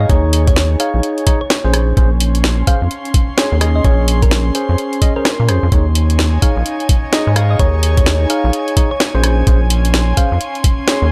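Built on a Bbm9 chord, this soulful, skippy two-step UK garage passage at 128 BPM in Bb minor opens with a mellow, thumb-piano-like FM pluck melody set in the background with chorus, phaser and dub echo, clean tine electric piano stabs carrying their own dub echo, a rubbery, hollow, wave-folded square bass up front, and an airy, breathy pad pumping with sidechain, before a gritty, thumpy, pitched-down kick and a tape-warm house kit of swung hi-hat, rim click and cracking snare join at 0.1 seconds in a dry mix.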